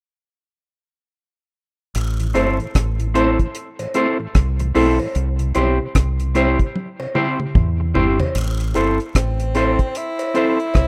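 A rough home-demo mix in a small room carries this laid-back, serious roots reggae cut: a dry, dark drum kit with a tight kick and a round, amped fingered electric bass sit up front from 2.0 seconds, joined by a clean electric guitar with tape echo, while a worn, woody, slightly detuned upright piano and a soft, flute-like tonewheel organ with chorus vibrato and key click stay in the background, a distant jawbone-type rattle and cowbell add colour, a drum fill arrives at 6.7 seconds, and a clear, punchy tenor saxophone with light vibrato and tape echo takes a brief solo from 9.2 seconds.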